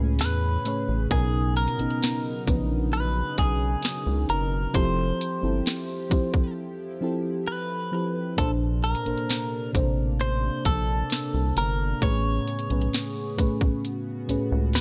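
A rubbery, wave-folded square bass, a round FM electric piano treated with chorus and phaser, and a shimmering pulse-width pad holding sustained chords open this tender, dreamy contemporary R&B excerpt at 66 BPM in 4/4, joined moments later by up-front trap drums with a hard-clipped kick, sharp snare and metallic hats and a clean, direct-recorded electric guitar melody run through phaser and digital delay, with a break from 6.6 to 8.4 s as the harmony moves through Amaj9, Bmaj9, Fmaj9 and Bbmaj9.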